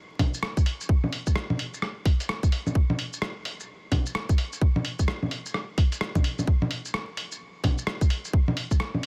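This future garage excerpt carries a rainy, wistful mood at 129 BPM in 4/4, with a 62% swing on the sixteenths that gives the groove a loose, shuffling lean. A tight, up-front electronic kick drum anchors the track from 0.2 s until it drops out at 8.8 s. Alongside it, a lo-fi sampler-style drum kit of bongos, hi-hat, rim click and shaker sits close and muffled, compressed and re-recorded in a small room. Its snare carries soft clipping, adding a gentle grit to the otherwise hazy percussion, and the kit plays on alone to 9.1 s. The mix is dry, densely limited and modern, with vinyl crackle laid across the whole recording.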